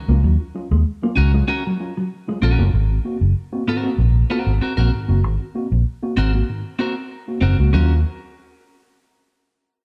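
Funk at 96 BPM in Eb dorian, driving and hypnotic, cut from a longer piece, moving between Ebm7 and Ab9 with a band playing live in one room under light reverb. A dark, round, foam-muted fingered bass sits up front from 0.1 to 8.0 seconds, while a mellow tine electric piano heard through its built-in speakers plays stabs and a dark fingered electric guitar states a riff from 0.1 to 2.7 seconds and returns briefly at 7.7 seconds. From 1.2 seconds a picked, compressed clean electric guitar with spring reverb adds accompaniment higher up.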